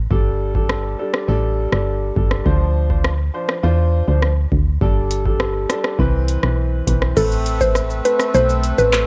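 A booming, overdriven analog drum machine with a deep kick and metallic hats drives this sultry, hypnotic dancehall excerpt in D dorian at 102 BPM alongside a punchy, dark FM bass and clear grand piano chords through Gsus2, Dm7 and Cmaj7, until at 7.2 seconds a woody, chorused synth pluck melody, a reedy, breathing harmonium with sidechain pumping and soft background maracas arrive over an Amadd9, all wrapped in the character of a home cassette recording.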